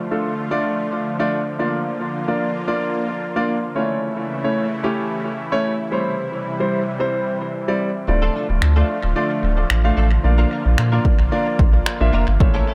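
Dance-pop with a driving, energetic feel, this excerpt opens on a lush, detuned supersaw pad holding sustained chords and an up-front concert grand piano with deep bass and short sustain, both pumping under sidechain while the piano's tape echo trails through a spring-reverb, echo-heavy mix. At 8.1 seconds a bright, clean, direct-recorded electric guitar riff arrives with ensemble chorus and tape echo, joined by a thick, saturated sub bass with a fast attack. At 8.6 seconds a punchy, layered deep house kit of kick drum and finger snaps enters.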